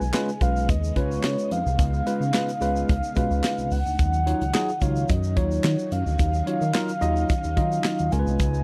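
Dry, close 1970s-style studio sound frames this short, danceable, funky boogie-funk clip at 109 BPM in Eb minor: a tight, up-front drum kit with handclaps, hi-hat, kick and snare and a glossy, dark chorused synth bass drive the groove beneath a clean tine electric piano, lush string-machine chords in the background, a grainy tube shaker, and a round, horn-like synth lead with vibrato, chorus and tape echo carrying the melody over a Db7 to Ebm9 change.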